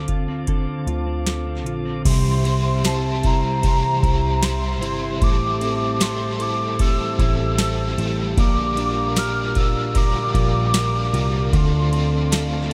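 A round, foam-muted electric bass, dark compressed clean guitar arpeggios soaked in lush chorus and dub echo, and soft, flute-like tonewheel organ chords turning through a slow rotary speaker open this ethereal, haunting dream pop excerpt at 76 BPM, and at 0.1 seconds a booming analog drum machine joins them, overdriven and up front with a deep kick, crisp snare and metallic hats. At 2.0 seconds an overdriven semi-hollow guitar adds accompaniment with tremolo, ensemble chorus and dub echo, and at 2.1 seconds a warbling, nostalgic, detuned lead carries the high melody with chorus, tremolo and vibrato. The echo-heavy mix with light reverb drifts over Dm7, C, Am7 and Gm7/Bb before returning to Dm7.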